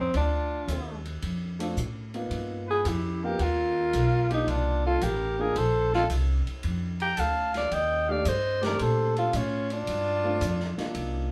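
Swinging and playful, this short cut from a longer small-group swing and bop piece moves at 111 BPM in Bb major, with a growling, raspy alto saxophone carrying the melody up front, complete with scooped notes and vibrato, while a clear trumpet with light vibrato sings a second line alongside it. A woody, pizzicato upright bass sits close in the mix, a distant, roomy drum kit with dark cymbals keeps time on hi-hat, ride and snare, and a concert grand piano with deep bass enters at 1.6 seconds to comp through a progression that resolves to Bbmaj9. The band plays live together in a small room whose short, wet ambience gives the whole take an intimate feel.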